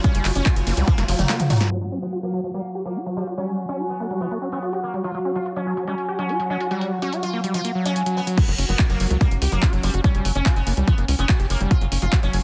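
A dense, heavily limited mix with light digital ambience carries this driving, hypnotic psychedelic trance at 144 BPM in F# major, tuned to A4 = 438 Hz. A bright, buzzing sitar melody with phaser and delay rides over a bubbling, detuned stepped-filter pad and a squelchy, gritty acid bass riff whose filter sweeps through the middle stretch, all three pumping to the sidechain. The heavy, tape-warm kick and punchy sawtooth sequencer bass open the cut, fall away around a fill on the layered techno kit of claps, hi-hat, snare, toms and cymbals, and return at 8.4 s alongside a faint, nasal wobble bass.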